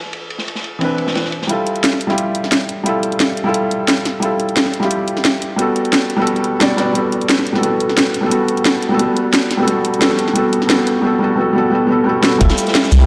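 A wet, lush hall reverb and a small-room ambience surround this dark, warm cut from a longer liquid drum and bass piece, which moves at 176 BPM in 4/4 with a straight feel in F lydian and an uplifting mood. A felt-muted upright piano carries the harmony throughout, its soft, intimate tone showing audible action noise and a short sustain, trailed by digital delay and shaped by a filter sweep in the opening seconds. A gritty breakbeat kit with dark, rolled-off cymbals and a medium-tuned snare sits low beneath the piano at the start, before a layered, overdriven garage kit takes over at 1.5 seconds, putting a cracking snare, hi-hat and shaker up front. The chords move from Cmaj9 to Fmaj9 and then to Gmaj9 through a long build-up, capped by a drum fill at 12.2 seconds. At 12.4 seconds the breakbeat kit returns alongside a tight electronic kick and a deep, round sine sub bass with tube saturation, landing back on Fmaj9.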